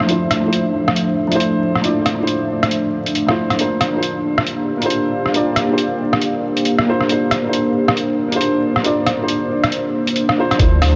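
Ghostly and rainy, this future garage excerpt moves in a swung 4/4, cut from a longer piece and steeped in vinyl crackle and a huge ambient reverb with a muffled top end. A dark upright piano, woody and slightly detuned with a boxy, short-sustained tone, plays accompaniment through tape echo and sidechain pumping, moving from Dm9 to C9sus4 at 3.6 seconds. Alongside it, a deep, full-bodied analog pad holds sustained chords with a slow attack, a sub octave and chorus, pumping along with the piano. A lo-fi sampler-style kit of hi-hat and rim click sits up front, compressed and pitched down, through studio reverb. At 10.6 seconds a menacing detuned saw bass arrives on a low D with a filter swell and saturated edge, joined by a thumpy, pitched-down electronic kick in the closing moment.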